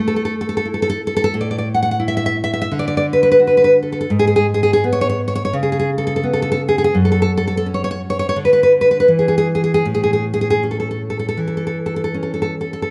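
A romantic piece for solo classical guitar, this short excerpt has a sunny, warm mood and a flexible rubato feel in 4/4. A single nylon-string guitar carries everything from 0.0 to 12.9 s, fingerpicked and sitting up front, its full-bodied, deep tone spanning from F#2 up to F#5. The harmony moves from an A5 through D and a G#madd11 to a lush Amaj9/C#, then passes through F#5 and a brief moment with the chords dropped before settling back on A at 9.9 s. The sound is acoustic and natural, placed in a recital hall whose moderate reverb gives the notes a gentle halo. It is cut from a longer piece, so the phrase feels like a glimpse into a larger lyrical work.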